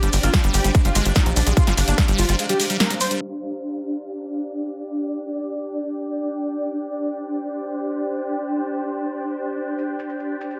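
A straight 4/4 pulse at 146 BPM drives this alien, hypnotic psychedelic trance fragment in G minor. It opens on a drop where an overdriven, distorted electronic kick sits up front beside a punchy techno kit with tape-warm hats, joined by a tight, nasal sequencer bass, a squelchy phased acid riff, a thick, detuned unison lead with dub echo, grainy maracas and a very quiet metallic wobble bass. A band accent lands at 2.8 seconds, and from 3.2 seconds the drums and basses fall away, leaving a swarming, tense drone and a blurred granular cloud pad, both pumping against the sidechain, to drift through a long filter sweep, with the maracas returning at 9.8 seconds.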